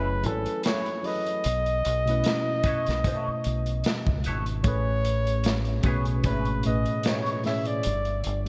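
Late-night and sultry, this slow neo-soul R&B excerpt at 75 BPM sets a breathy, mellow flugelhorn melody with light vibrato up front over a worn, slightly out-of-tune tine electric piano bathed in lush chorus, a round, dark fingered dub bass, a gritty, saturated breakbeat kit with gated reverb that enters at 0.2 seconds, and a lo-fi, slightly broken-up electric guitar with wah that drops out at 7.3 seconds, all moving from F#m11 to Amaj9 inside a lush hall and bright 1980s-style digital production.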